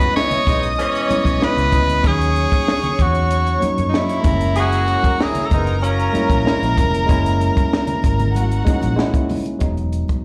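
A straight 4/4 groove at 95 BPM from a compact cocktail drum kit with a punchy kick and high-tuned snare, a round, foam-muted fingered electric bass and very quiet, thin-skinned congas entering at 0.2 seconds underpins this romantic, lush 1970s-style soul clip, heard as a live gig through the venue's PA with club reverb, where a bright, up-front tenor saxophone with scooped notes carries the melody over a dark, reedy violin section, a worn, slightly out-of-tune tine electric piano and tight, soft-attack horn stabs that stop at 6.7 seconds, the saxophone, strings, piano and horns all bathed in plate reverb and slapback echo as the chords move from F#9sus4 through D#m7 and F#7 to Emaj7 at 9.6 seconds.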